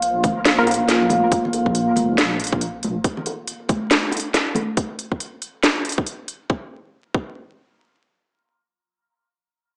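Crackling vinyl, a small-speaker tone and a wet spring reverb frame this cavernous, meditative deep dubstep at 139 BPM in a swung half-time feel, where a moody, wave-folded dark pad in Bb and a compressed, detuned wobble bass hold for the first 3.0 seconds beside a faint, breathy wind-like noise texture, while a tight, tape-warm electronic kick and a garage kit with cracking snare and crisp hats sit up front, distant acoustic congas and bongos carry dub echo, a muted, filtered dub chord stab flickers briefly in the background, and the garage kit stops at 6.4 seconds.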